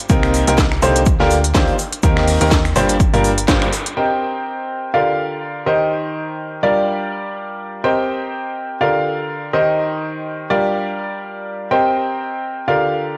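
A bright, up-front grand piano carries a bittersweet, soulful piano house riff at 124 BPM in G minor over Cm7, Gm7 and Eb6 chords, pumping with the sidechain and trailed by tape echo, while a round, dark FM bass, a punchy overdriven electronic kick, a garage kit with cracking snare, finger snaps and crisp low-passed hats, and a very quiet indie kit with fat snare and shaker push the swung groove until the bass and kick stop at 3.6 seconds and the kits at 3.9 seconds, leaving the piano alone in a spring-reverb room with cassette grain until 13.2 seconds.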